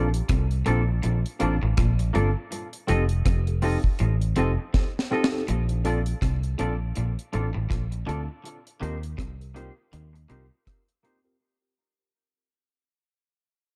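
A warm, foam-muted fingered bass sits up front with a dry, deep reggae drum kit of tight kick, high-tuned snare, rim click and hi-hat in this tender, romantic lovers rock excerpt, while a worn, slightly out-of-tune tine electric piano and a bright, picked twangy electric guitar playing stabs, both bathed in lush chorus and tape echo, share the mix with a dark, compressed twangy guitar riff carrying its own tape echo, all set in a small room with a dark, warm production until a drum fill at 4.7 s leads into a fade-out from 5.5 s.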